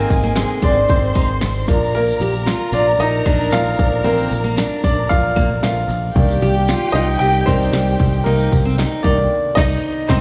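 A straight 4/4 groove at 114 BPM from a punchy, layered electronic house drum kit of kick, snare, bright hi-hats, ride and crash, with a jingly tambourine in the background, drives this uplifting, anthemic piano-driven pop passage captured live through a club PA, where a clear, up-front baby grand piano plays a polished solo over Abadd9, Bb and Cm7 chords, a growly, punchy electric bass holds the low end, a full-bodied picked steel-string acoustic guitar riff with slapback echo runs until 9.2 seconds, and a lush, bowed violin section with vibrato and its own slapback echo carries a second line before the band hits an accent at 9.3 seconds in this brief cut from a longer piece.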